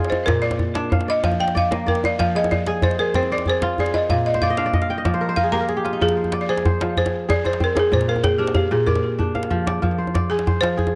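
A straight 12/8 pulse at 126 BPM in F dorian drives this hypnotic, reflective West African string and xylophone music, where a woody, buzzing balafon struck with hard rubber mallets carries a dub-echoed solo through the first 6.0 seconds over a crisp, ringing fingerpicked kora spinning arpeggios, with a kora fill arriving at 4.3 seconds and a close, hard-handed djembe fill at 5.5 seconds, the whole heard through spring reverb and small room ambience in an echo-heavy mix.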